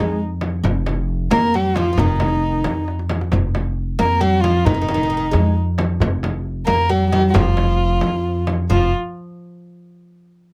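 Melancholic and hypnotic, this short cut from a longer Persian modal ensemble piece moves in a straight 6/8 within dastgah shur. A single bowed kamancheh carries the melody up front, its dark, intimate tone shaped by light vibrato, a soft attack, portamento and a smooth top. Beneath it, a fretless oud plays a second line with mellow, woody, double-stringed plectrum plucks, while an upright bass sits up front with warm pizzicato on steel strings. A deep, large frame drum in a live room and a tight, very quiet tombak played with soft hands enter at 0.4 s, with a drum fill at 2.9 s. The close, detailed recording carries little reverb, and a new section begins at 8.7 s just before the cut ends.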